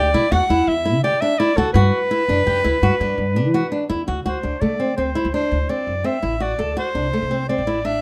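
A straight, seven-beat metre drives this hypnotic, pensive contemporary instrumental excerpt, with the harmony shifting at 4.3 s into a new section. Up front, a breathy soprano saxophone carries the melody in an intimate, whispered pop style with light vibrato and a soft attack, while a fingerpicked flamenco guitar with fresh strings lays down arpeggios. Beneath them, a woody pizzicato upright bass anchors the low end, all set in a moderate studio reverb.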